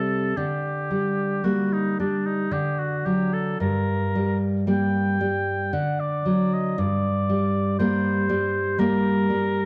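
Solemn and elegiac, this brief passage, cut from a longer piece, pairs oboe and classical guitar in a romantic duo that moves at a slow, rubato pace in triple time. The oboe carries the melody with a mellow, soft-attacked tone, a smooth top and light vibrato, phrased in a classical style as the solo voice. Beneath it, the nylon-string guitar plays fingerpicked accompaniment in a deep register, its acoustic sound slightly louder in the balance than the oboe, though both sit up front. The harmony alternates between G minor and D, opening on Gm/D at 0.4 seconds and returning to G minor at 6.8 seconds. A moderate scoring-stage reverb and a dark, warm production give the duo a hushed, sorrowful glow across its 9.7 seconds.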